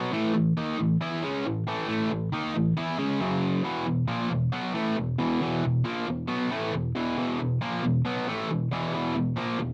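A cranked stack guitar opens the excerpt on its own, playing a swaggering, raunchy rock figure at 136 BPM in a straight 4/4. The electric guitar is bright and overdriven, picked and double-tracked, and it sits up front across the full 9.7 seconds, ranging from E2 to E4. The chords move from A5 to F#5 at 3.2 seconds and on to E5 at 3.6 seconds. The sound is dry and close, in the manner of a 1970s studio recording, with a moderate studio ambience around the guitar. Cut from a longer piece, the passage feels like a brash solo caught mid-stride.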